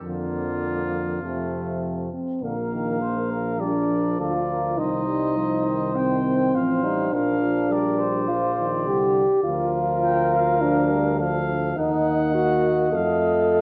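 Heard through worn, warbling cassette tape with a wavering pitch drift and a wet recital-hall reverb, this stately classical brass quintet excerpt in Bb major moves at a steady 102 BPM in 4/4. A clear, distant trumpet carries the melody above a soft-attacked, mellow flugelhorn second line, while the French horn sits up front in the accompaniment and a close-miked euphonium blends in the background over a warm, roomy tuba bass, each lower voice touched with light vibrato. After a brief opening phrase, a longer passage begins at 2.4 seconds, and an E-flat minor chord at 11.8 seconds briefly shades the harmony before it settles onto F7.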